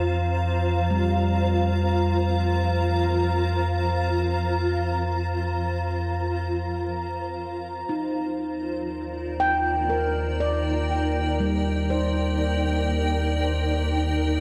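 Warm and peaceful, this ambient excerpt drifts at 60 BPM in 3/4. A bright, blurred granular cloud pad holds sustained chords from Fsus4 to Ebmaj7 at 7.9 seconds, and a deep, round sub bass sits beneath it. From 0.9 seconds, a ringing, meditative stainless-steel handpan played with the fingertips adds arpeggios through a diffuse ambient delay, all set in a lush hall reverb.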